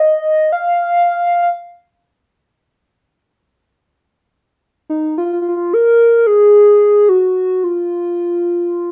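The recording has a dark, warm production, with a light reverb around it. This short excerpt of Arabic music carries a soulful, longing mood over a straight 10/8 feel. A single lead plays alone from start to finish: a pure sine tone with a soft, round body and a touch of triangle colour. Its notes start quickly and sustain, shimmering with chorus and vibrato, and it sits up front, ranging from Eb4 to F5. The line falls into two sections, the second beginning at 4.3 seconds and running to the end at 8.9 seconds.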